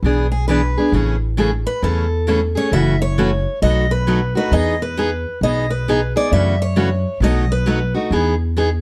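Swung eighths at 134 BPM drive this lively acoustic string swing passage in E major, with a woody, thumpy pizzicato upright bass on gut strings and a bright picked steel-string guitar comping up front over changes that move from E7 through Amaj7, F#m7 and B7 to Emaj7. A second, warmer picked guitar on fresh strings plays a higher line from 0.3 to 7.9 seconds as the guitar solo carries the short excerpt, with finger squeaks audible on both guitars. Light reverb and a dark production round off the sound.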